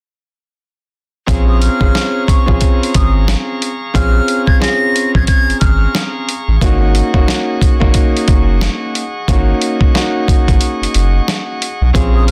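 A swung 90 BPM boom-bap groove in 4/4 drives this reflective, dark hip-hop excerpt in Bb minor, built on a dusty, gritty sampler-style kit of thumpy kick, medium-tuned snare and hi-hat, sitting up front with compression. A deep, round sine sub bass holds the low end just as prominently, with a fast attack and long sustained notes. A mellow, vintage-sounding baby grand piano plays smooth accompaniment with long sustain, while a bright, clean tonewheel organ floats quieter sustained chords above it through a lush chorus. From 1.5 seconds an airy, tongued concert flute with a reedy straight tone carries the melody high in its range until 6.1 seconds, returning only briefly at the very end. The harmony moves from Bbm7 to Ab7sus4 around 6.6 seconds, a break arrives at 10.6 seconds, and the dry, dense, heavily limited modern master keeps every part close and loud.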